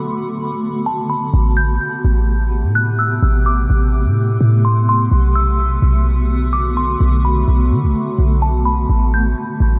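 A deep, boomy 808-style bass arrives up front at 1.3 s, its dark sine tone striking fast and decaying under this ethereal, hazy cloud-rap excerpt in A dorian at 127 BPM with a half-time feel. A cloudy granular pad holds sustained, blurred chords from the opening through a filter sweep, while a delicate FM tine bell enters at 0.9 s with a tinkling, bright melody softened by chorus and delay. The harmony moves between Bm7 and Am9, and the dreamy mix is soaked in a huge ambient reverb.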